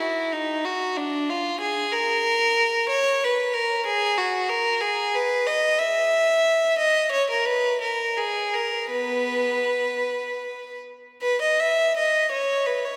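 A classical, baroque-style suite movement for unaccompanied violin, this short passage cut from a longer piece has a flowing, radiant mood. It moves in 6/8 at roughly 47-64 BPM counted in dotted quarters, with a rubato feel that lets the pulse breathe, and it sits in B major. A single bowed violin carries everything from 0.0 to 13.0 seconds, ranging from B3 up to E5 with a clear, focused tone and vibrato. The instrument is captured close and up front, yet it is surrounded by the long, wet reverb of a church or concert hall, with a decay of about 3.2 seconds. The opening idea runs to 11.2 seconds before a new section begins and carries on until the cut at 13.0 seconds.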